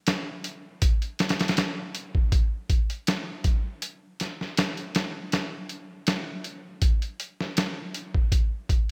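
Bright 1980s-style digital production with light reverb frames this brief, melancholic and smoky trip hop excerpt at 80 BPM in 4/4 with a 54% swing on the 16ths, where an up-front, gritty, pitched-down boom bap sampler-style drum kit of thumpy kick, medium-tuned snare and hi-hat, compressed and tape-warm with a small-room character, plays from 0.1 to 8.9 seconds.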